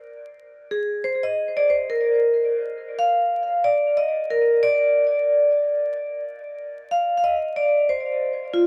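A swung 4/4 hip hop groove at 92 BPM sets a smooth, warm mood in this short passage cut from a longer piece. A solo vibraphone played with medium hard mallets enters at 0.7 s and carries on to 8.7 s, ranging from F4 to F5 with a metallic, ringing tone, a slow motor vibrato and a boxy, up-front presence thrown into dub echo. The echo-heavy mix sits in moderate spring reverb and small room ambience, dusted with vinyl crackle.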